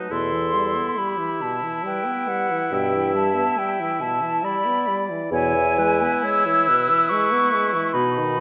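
This slow, romantic classical movement for wind quintet opens on an E minor chord, with the oboe, French horn and clarinet sounding together and the flute and mellow bassoon joining a moment later at 0.1 seconds. At 69 BPM in a rubato 3/4, the mood is tender and warm, settling from E minor through Em/G to a turn into E major at 5.3 seconds. The hollow, pure concert flute carries the melody up front in its high register, with vibrato and tongued notes. Beneath it the oboe supplies a soft-attacked second line with light vibrato, while the clarinet and the clear French horn fill out the accompaniment, the clarinet with a soft, vintage character. The bassoon anchors the bass with light vibrato, all within the moderate reverb of a scoring stage, in this brief passage cut from a longer piece.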